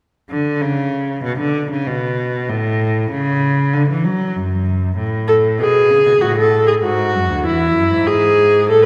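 A straight 4/4 pulse at 96 BPM drives this lively, elegant excerpt from a baroque-style string quartet fugue in D major, where a rich, focused bowed cello with vibrato carries the bass line up front from 0.3 seconds and a smooth, even viola with vibrato joins it at 5.3 seconds, both bathed in a wet scoring-stage reverb as the harmony moves from Bmadd9 through A and D to E.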